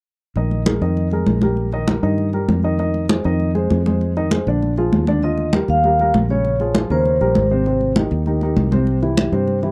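A mellow vibraphone played with soft mallets, its motor off, carries a brief ringing melody from 5.2 to 7.5 seconds over a lively, sunny Afro-Cuban jazz groove at 197 BPM in Eb major. A dark, intimate concert grand piano with audible action noise and a round, foam-muted fingered electric bass sit up front alongside thick-skinned, medium-tuned congas with a vintage, band-limited character. The dry, close 1970s-style studio sound frames a short cut from a longer piece, moving from Bb7sus4 through Ebmaj9 and Abmaj7 before landing on C.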